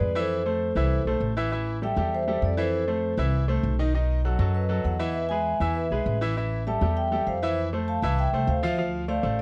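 Salsa at a fiery, danceable 198 BPM in A minor, this short excerpt cut from a longer piece features a metallic, ringing vibraphone with its motor off, carrying the melody in a boxy small-room sound. A brilliant, intimate grand piano sits up front with audible action noise, while a woody, dark pizzicato upright bass on steel strings anchors the low end. The dry, close 1970s-style studio sound moves through chords such as Fmaj7, Am7, B7 and E before arriving at Dm7 at 8.8 seconds.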